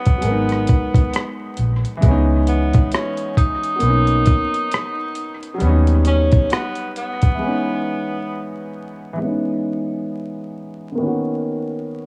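A clear tenor saxophone with light vibrato, scooped notes and dub echo opens this nostalgic, hazy lo-fi hip hop excerpt together with a woody upright piano under a low-pass filter, in C# dorian at a swung 67 BPM. Gritty, compressed sampler-style drums with a thumpy kick, hi-hat and rim click sit up front beside a round, dark, foam-muted electric bass, over chords moving through G#m9, C#m9, Bmaj7 and D#7alt. A break arrives at 7.4 seconds after the drums and bass have dropped out, and from 9.2 seconds a filter sweep colours the piano as it carries on alone, with vinyl crackle and small-room ambience throughout the echo-heavy mix.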